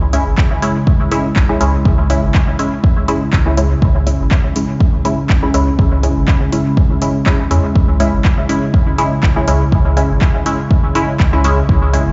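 A swung 4/4 groove at 122 BPM drives this cavernous, hypnotic dub techno cut in C# minor, anchored by an overdriven, up-front electronic kick that enters at 0.4 seconds and a quieter deep house kit of metallic hi-hats and handclaps, also overdriven and trailing dub echo. A round, soft sub bass holds the low end while muted, detuned sawtooth chord stabs sit forward, colored by chorus, phaser, cassette tape and dub echo, over a warbling, nostalgic pad of dark sustained chords with slow attack and built-in reverb, the stabs, pad and bass all pumping against the sidechain. Held on a single C# minor chord, the excerpt sounds as if played through a big sound system in a bare room, bathed in large studio reverb with the top end cut above 7.6 kHz.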